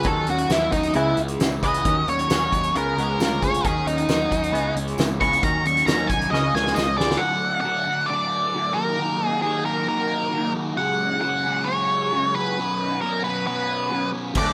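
Indie rock with a wistful yet upbeat mood, this excerpt from a longer piece has the loose, rough feel of a home demo in a small room with light reverb. A dark, fuzz-soaked lead guitar with digital delay sits up front and takes a solo through the first half. Beneath it, an overdriven hollow-body guitar drives a phaser-coloured riff, and a buzzy vintage combo organ holds very quiet chords with light vibrato. For the opening 7.2 seconds, a twangy, compressed guitar with ensemble chorus adds a riff in the background, and a growling fingered bass with overdrive gives a punchy low end. A roomy acoustic kit with dark cymbals and a fat snare also plays this stretch and rounds it off with a fill, while a jingly tambourine shimmers faintly, before the harmony shifts through D, D#m, F#sus2/C# and Bsus2. A clear, close-miked trumpet slips in at 13.5 seconds with a brief pop-style line in the background.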